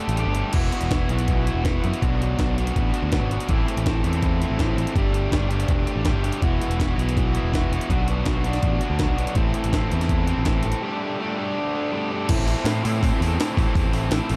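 Indie rock at 163 BPM in A dorian, this restless, moody excerpt from a longer piece drives forward in a straight 4/4 with a dark production and little reverb. Two overdriven guitars play riffs throughout: a raw garage guitar with a lo-fi, picked edge, and a brighter distorted electric guitar colored by subtle chorus and tape echo. Beneath them, a modern bright picked electric bass sounds punchy and direct, entering at 0.1 seconds alongside a jungle sampler-style drum kit. The drums sit up front, compressed, pitched up and gritty, with a thumpy kick, a medium-tuned snare, hi-hat and crash cymbal. The chords cycle through Gsus2, Esus2, Bm and Am, with breaks at the opening and from 10.8 to 12.3 seconds before a short closing section settles on Am.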